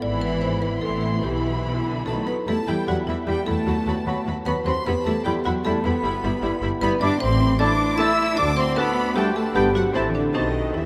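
A woody, bright marimba struck with hard mallets carries the melody of this playful, whimsical film cue in E minor, moving at 152 BPM in a straight 3/4 with a quirky, mischievous air, while bowed violin sections, one focused and one expressive and close, add a high melody and a second line over lush viola accompaniment, mellow French horn chords, and a bass of smooth cellos and double basses. A pure concert flute enters at 2.1 seconds, followed at 2.9 seconds by a punchy oboe, a distant, very quiet clarinet and a warm, very quiet bassoon. The whole orchestra sits in a vast cathedral reverb, and this excerpt, cut from a longer piece, closes on a tense B7b9 chord.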